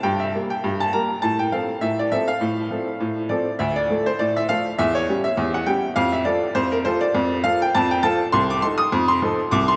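Ragtime piano in a jaunty, lively mood, this short fragment of a longer piece features a bright, woody upright piano playing solo from 0.0 to 9.8 seconds in a swung 2/4. The piano sits up front yet rings out into a vast, echoing cathedral space, its long reverb tail lending the harmony a grand, open bloom. The chords move from Gm6 through F/A, Dm and C#dim/E to F6 and F7/C.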